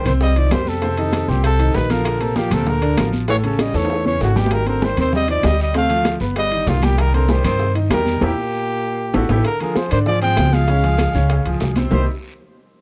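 A straight 4/4 groove of damped, high-tuned congas, tight bongos, ringing metal-shell timbales and a raspy guiro sits in the background of this sultry, sophisticated Afro-Cuban jazz excerpt, beneath a woody pizzicato upright bass up front, a clear, close-miked trumpet carrying the melody with light vibrato, a baritone saxophone with vibrato on the second line and a natural-sounding grand piano in accompaniment, with drum fills at 3.7 and 9.0 seconds and a band accent at 8.2 seconds, all captured in a dry, close small-room sound.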